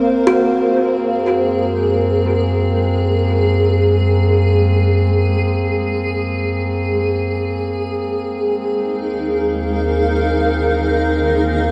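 Bathed in a vast cathedral reverb with a dulled top end, this luminous, peaceful ambient excerpt in free time sets a blurred, evolving granular cloud pad up front on a Gbsus2 chord, over a soft, breathing pedal harmonium drone, while a woody, hollow kalimba plucks short arpeggios through a diffuse delay until 4.1 seconds, and a dark, warbling, rumbling bass drone enters at 1.4 seconds to hold an ominous depth beneath the fading harmonium.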